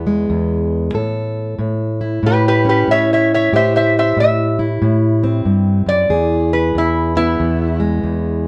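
A bright, nasal lap resonator guitar carries a metallic slide melody from 2.3 to 7.8 seconds over a boxy, fingerpicked parlour-style plugged-in steel-string acoustic guitar in this soulful, laid-back acoustic country blues excerpt, set at a swung 93 BPM in 4/4 with chords moving from E through A and Am7 back to E, both guitars up front in a dark production with moderate studio reverb.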